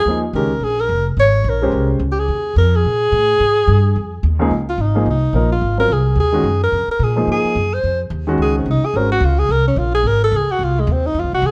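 Swinging 4/4 at a brisk 216 BPM, this searching, spiritual modal jazz excerpt opens in Eb mixolydian over an Eb9sus4, with a thumpy, woody pizzicato upright bass up front, a mellow alto saxophone with vibrato, scooped notes and plate reverb carrying the melody, and a warm upright piano comping in brief stretches, before the harmony moves to Dbmaj9 and Db major at 4.5 s, where the saxophone takes a smooth-topped solo through to the end at 11.5 s while the piano drops out at 9.1 s.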